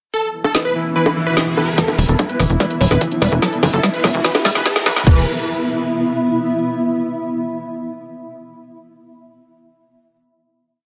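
Psychedelic trance at 146 BPM in 4/4, this short, intense piece opens with a bright, detuned supersaw stab repeating its riff in the background, soon joined by a pulsing, tempo-synced gated texture droning with chorus and 12-bit sampler grit, a rising effect, and an up-front granular cloud pad of blurred, mellow, slowly shifting chords. A programmed drum and bass kit plays overdriven, with a woody snare backbeat, bright hats, a high bongo and crash. At 1.8 seconds the build begins: a tight, overdriven kick lands four-on-the-floor and a squelchy, resonant acid bass runs a 6-step loop that drifts against the bar, and at 2.0 seconds a nasal sawtooth sequencer bass gallops in sixteenth notes under tube saturation. A very quiet, dark vowel-sweep wobble bass adds short answering phrases, while filter sweeps open the acid line and the supersaw, the synths and pad pumping against the kick as a drum fill and riser push toward 5.1 seconds. 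The groove then falls away, leaving the reverb-soaked pad to sustain its final chord until 6.7 seconds, capping a dense, heavily limited, loud master.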